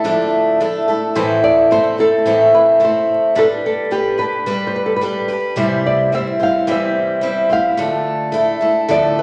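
A gently swung sixteenth-note feel at 109 BPM in 4/4 carries this short, tender and wistful pop fragment, cut from a longer piece and tuned slightly sharp to A4 = 442 Hz. A picked steel-string acoustic guitar plays the accompaniment throughout the 9.2 seconds, sitting up front with a warm, concert-like tone. Above it, a dark, small-sounding nylon-string guitar carries the fingerpicked melody between G4 and F5, lower in the mix, with audible finger squeaks. The harmony moves from Dmadd9 through Am, G and C before returning to Dmadd9 at 7.8 seconds. A wet large-studio reverb with a 1.3-second decay surrounds the guitars, and a layer of vinyl crackle and a dulled top end give the sound a worn, nostalgic patina.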